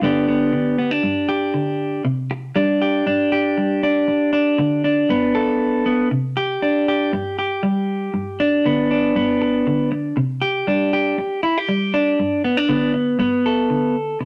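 A straight 4/4 pulse at 118 BPM carries this highlife passage, taken from a longer piece, with a warm and sunny mood. A lone clean electric guitar plays throughout, from 0.0 to 14.2 seconds, ranging from G2 up to A4. Its tone is dark yet clean and picked, compressed and placed up front in the mix. The harmony moves from G to Csus2 at 2.0 seconds, then keeps alternating between Csus2 and G or Gadd9 in roughly two-second steps. A moderate studio reverb gives the guitar a modest sense of room around it.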